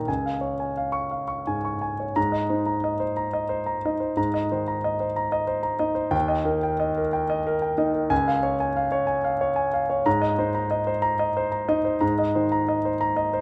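A solo concert grand piano, up front and intimate with audible action noise, deep bass and a short sustain, carries this hopeful neoclassical minimalist piece in a rubato 6/8. It opens on a Db chord, then shifts at 2.2 seconds into a new section that moves through Abadd9, Eb and Db before returning to Abadd9 at 10.1 seconds. Light reverb and small room ambience frame the rough home demo mix of this passage, which is cut from a longer work.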